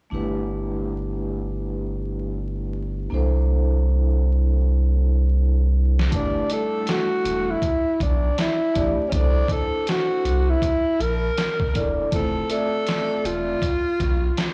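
This smooth, relaxed jazz-hop excerpt at 80 BPM opens on a mellow vibraphone played with soft mallets, its metallic, ringing tone carrying a slow motor vibrato. Beneath it sits a deep, round sine sub bass with tube saturation, sustained and up front, as the harmony moves from G69 to C13. At 6.0 seconds a compressed, pitched-down sampler-style drum kit enters with a thumpy kick, a medium-tuned snare and hi-hat, swung on the sixteenths and placed up front. Moments later a breathy alto saxophone takes the melody in an intimate, whispered subtone, its soft attack and vibrato touched by a slapback echo. The chords return to G69 and C13 before settling on Fmaj7 near the close. The overall sound is blown-out and overdriven, wrapped in studio ambience and vinyl crackle.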